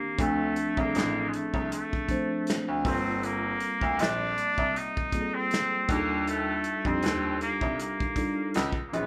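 Sultry and late-night, this short neo-soul and R&B excerpt, cut from a longer piece, moves at an unhurried pace with a gentle swing in its sixteenth notes. A trumpet with a straight mute carries the melody from the opening moment, its nasal, breathy tone shaped by scooped notes and light vibrato in a jazz-style solo voice. A mellow tine electric piano, heard through its built-in speakers, supplies clean accompaniment underneath. From 0.2 seconds a clear, slightly worn grand piano takes the bass role in its low register, joined by a dry, dark soul drum kit with finger snaps, hi-hat, a punchy kick and a medium-tuned snare. The harmony drifts from Dm7 through Gm11 and Ebmaj9#11 to Dbm9, and light reverb gives the sense of a band playing live together in one room.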